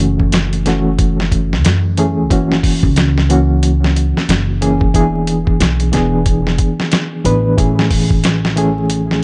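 A cinematic, brooding trip hop fragment in F# minor, moving at 91 BPM in 4/4 with a 60% swing on the sixteenths and cut from a longer piece. A reedy, worn electric piano carries the accompaniment up front, slightly out of tune and shimmering with fast tremolo, its tone darkened by a low-pass filter and trailed by tape echo as it moves through F#m7, F#7, E7 and Amaj7. Beneath it, a woody pizzicato upright bass with steel strings holds the low end. A gritty, compressed sampler-style kit sits up front with a thumpy kick, a medium-tuned snare and hi-hat, all carrying a tape-warm character. All three parts play together from 0.0 to 9.2 seconds, wrapped in light reverb and digital ambience, with vinyl crackle and a high end that stops at 10.3 kHz.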